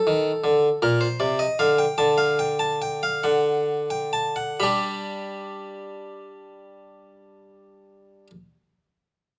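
A bright, plucked harpsichord on a single set of strings, French in style and sitting up front in the mix with a mid-forward tone, plays a driving yet contemplative baroque-style two-part invention in 6/8 at 42-55 BPM (dotted quarters), slowing down over the first 4.6 seconds as it moves from D5 through Gm/Bb, Dsus4 and D to G, all in light reverb, in this brief passage cut from a longer piece.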